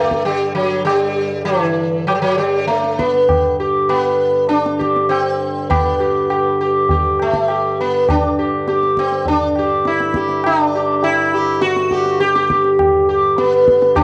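A straight 4/4 pulse at 101 BPM gathers speed across this short Hindustani classical excerpt in G, set in raga bilaval, with a radiant, meditative mood. An up-front, buzzing sitar carries the melody with shimmering sympathetic strings, over a reedy, breathing pedal harmonium drone, both colored by cassette tape. Low-tuned tabla with a short ring joins at 0.1 s, and the home cassette recording sits in a wet booth ambience.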